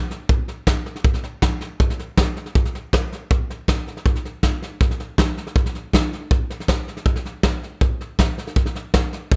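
Closely miked and dry, this short heartfelt, nostalgic country cut at 160 BPM in a straight 4/4 features only a soft, natural-sounding brush drum kit, placed up front from 0.1 to 9.4 seconds, with brushed hi-hat and medium-tuned snare over a punchy kick.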